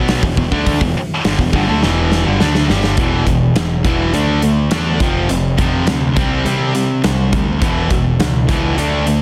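Driving and menacing, this short hard rock excerpt in E phrygian pounds along at 104 BPM in a straight 4/4, with a bright, high-gain distorted guitar riffing up front while an overdriven semi-hollow guitar adds a hollow-bodied warmth in the background. A growling, punchy picked bass with overdrive digs into the low end, and a big-room acoustic drum kit with a dark, smooth tone and punchy kick comes in at 0.1 seconds, rolling through a fill from 1.8 to 3.0 seconds. At 3.0 seconds the riff shifts onto power chords moving through E5, D5, F5 and C5, all sitting in light reverb under a dense, heavily limited modern master.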